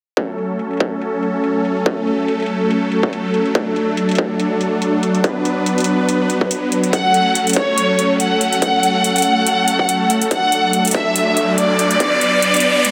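A half-time 4/4 groove at 142 BPM with a 55% swing on the sixteenths drives this heavy, aggressive wobble dubstep in F# minor, where a distorted, up-front electronic kick and metallic, low-pass-filtered hi-hats pair with huge, detuned sidechain-pumped supersaw chords moving through F#m, D and Bm, a rich, bowed studio violin section with vibrato and tape echo carries the melody from 6.9 seconds, and an electronic riser enters at 11.0 seconds, all within a moderate plate-reverb ambience.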